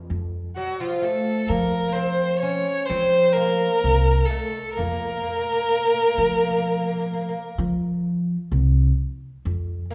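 Set in a straight 10/8 metre counted in eighths at 128 BPM, this brief Arabic passage, cut from a longer piece, moves in F maqam hijaz with a hypnotic, longing mood. A pizzicato upright bass opens the music at 0.1 seconds, its woody, steel-strung tone sitting up front in the low register. At 0.6 seconds a single bowed violin carries the melody with a warm, smooth and even sound coloured by vibrato. Beside it, a fretless oud plays a second line in a middle register, its plectrum-plucked double strings giving a bright, acoustic ring. The violin falls away at 7.5 seconds, leaving oud and bass to close the section. A wet recital hall reverb surrounds the ensemble, lending the players a sense of space.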